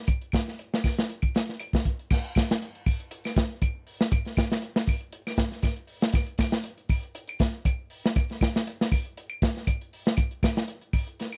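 Afrobeat at 119 BPM in a straight 4/4, this short excerpt cut from a longer piece carries a defiant, funky mood. A crunchy breakbeat drum kit sits up front for the whole 11.4 seconds, its kick, snare, hi-hat and crash cymbal captured in a studio room with a gritty, saturated character, a tight kick, a medium-tuned snare and dark cymbals under a rolled-off top. Woody, band-limited claves play throughout in the background, lending a vintage acoustic tick beneath the kit. The music moves from a brief opening section into a second one at 2.1 seconds that carries on to the end. The sound is that of a dry, close 1970s-style studio recording with a light touch of reverb.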